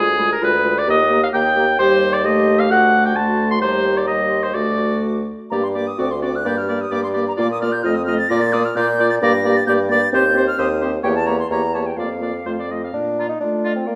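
The oboe stands out most, sitting up front with a warm, classical-style second line in this lively, cheerful fragment of a quick classical-period movement for wind quintet. The silver concert flute carries the melody from 0.2 seconds, its pure, metallic tone tongued and touched with vibrato yet set at a distance in the hall. The mellow French horn, with light vibrato, and the smooth-topped clarinet, placed in the background, fill in the accompaniment. The bassoon anchors the bass close to the listener, its warm sound colored by light vibrato. Moving at 131 BPM in a straight 2/4, the music begins in G minor and settles into B-flat major at 9.2 seconds. A roomy recital-hall reverb with a 1.7-second decay gives the ensemble a gently spacious, airy setting.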